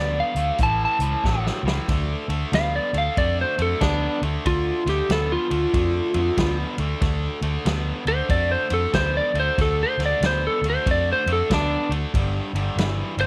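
Brooding and soulful, this electric blues shuffle in D minor swings at 94 BPM in a small room, an excerpt cut from a longer piece. An up-front, slightly broken-up slide guitar played with fingerpicks carries the melody and takes a solo from 1.9 seconds, over a bright overdriven picked guitar riff and a round, foam-muted vintage bass sitting prominently beneath. A vintage acoustic kit with dark cymbals and a punchy kick enters at 0.4 seconds and plays a fill just before the solo begins, with the harmony settling on D minor before moving to G5 at 12.1 seconds.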